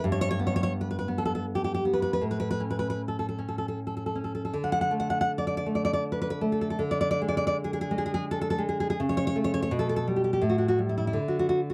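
A fingerpicked nylon-string guitar opens on a G chord and carries this short romantic piece alone, in D major and 3/4 time. The mood is tender, and the tempo drifts between 74 and 88 BPM with a rubato feel that lets the phrases breathe. The guitar sits up front with a full-bodied, deep classical tone spanning G2 to F#5, and a finger squeak can be heard. The harmony moves from G through A to D5, then passes quickly through A/C#, G/B and Emadd11/A before the chords fall away at 11.2 seconds. Light reverb and a dark, warm production wrap the sound in this 11.7-second passage taken from a longer work.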